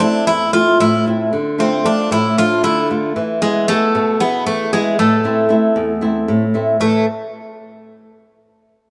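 Moody and cool, this brief cut from a longer Greek folk piece moves at 230 BPM in eighths in a straight 7/8 in A harmonic minor, with a bright, metallic, picked bouzouki carrying the melody on double strings with some octave-doubled courses, while a warm, fingerpicked flamenco guitar, finger squeaks and all, accompanies through Am, Dm, E and back to Am before settling on A5 at 6.8 seconds; both instruments sit up front from 0.0 to 7.0 seconds inside a wet plate reverb heard from further back in the room.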